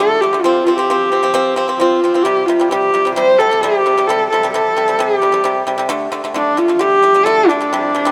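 In a straight 4/4 at 132 BPM, this windswept, vast excerpt of Mongolian folk music in D yu mode sets a rich, husky, focused horsehead fiddle melody with vibrato and portamento up front over dry, percussive arpeggios from a fingerpicked acoustic pipa, both playing throughout the 8.1 seconds inside a huge ambient reverb.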